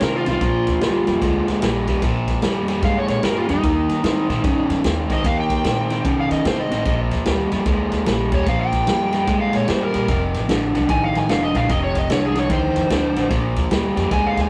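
A rough rehearsal-room recording with a moderate stone-room reverb opens this laid-back, soulful electric blues shuffle, a short cut from a longer piece in Bb mixolydian at 149 BPM in 4/4, with a 64% swing on the eighth notes. An overdriven electric guitar carries the picked riff in its low and middle register, sitting up front as the loudest part. Above it, a dark, overdriven slide guitar plays a fingered solo from Eb4 to Ab5 across the full 14.5 seconds. A woody pizzicato upright bass with steel strings anchors the low end, while a vintage kit with a punchy kick, medium-tuned snare and ride cymbal has a natural small-room sound with a rolled-off top. The harmony moves from Bb6 to Eb6, back to Bb6 and on to F6, returning to Bb6 at 13.3 seconds.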